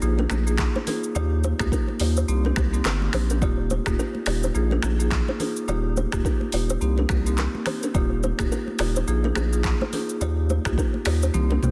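Afrobeats with a sunny, breezy lilt, this short cut sits on a swung sixteenth-note groove, with chords cycling through Bb7sus4, Ebadd9 and Cm7. An up-front electronic afro-pop kit with a deep kick, metallic hats, snaps, claps, rim clicks, shaker, toms and a soft-clipped snare drives alongside a thick, saturated sine sub bass, while a warm marimba played with medium mallets carries the accompaniment. From 0.2 seconds a mellow, woody kalimba riff rings out through digital delay with a hollow, band-limited vintage tone, very quiet damped, high-tuned congas add a thin, close and dry skin sound, and a drum fill closes the passage at 11.3 seconds in a dense, heavily limited modern mix with studio reverb.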